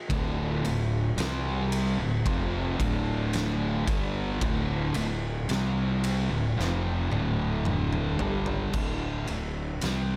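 Hypnotic and ominous, this stoner and doom metal excerpt crawls at 56 BPM in D minor, with a growly, bright, overdriven fingered bass and an oversized low-tuned drum kit with a boomy kick and fat snare sitting up front in a gritty, pumping room, while two dark, thick fuzz guitars and a double-tracked, compressed fuzz guitar grind out a riff in the background; a drum fill arrives at 6.6 seconds, and the double-tracked guitar stops at 8.7 seconds as the harmony moves from Dm to D5.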